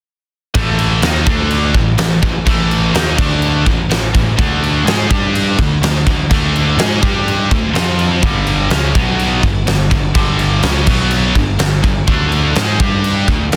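Swaggering and powerful, this hard rock excerpt drives at 125 BPM in a straight 4/4, with two scooped high-gain guitars and a tight, double-tracked distorted guitar picking power-chord riffs over A5, D5, G5 and B5 from 0.5 seconds, set back in the mix behind the drums. A huge, natural-sounding arena kit sits up front with a fat snare, punchy kick and crashing cymbals, while a growly, fuzz-laden picked bass enters at 0.6 seconds and digs in low. The small room ambience and dense, heavily limited modern master keep the whole thing loud and compact until it cuts off at 13.6 seconds.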